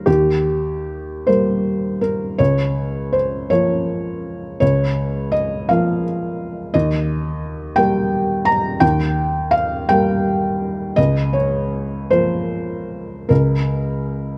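A felt-muted upright piano plays alone from the first moment, its soft, boxy tone sitting up front with audible action noise close to the ear. This is neoclassical minimalist piano with a melancholic, reflective mood, moving in 6/8 with a free, rubato feel. The harmony alternates between Eb and Bbm/Db, shifting at 2.4 seconds and returning in turn, so the brief passage circles quietly between the two colours. The instrument spans from Db2 up to Bb5, and its short sustain keeps each note intimate and close. Light reverb and detailed close miking frame the 14.4-second section, which is cut from a longer piece.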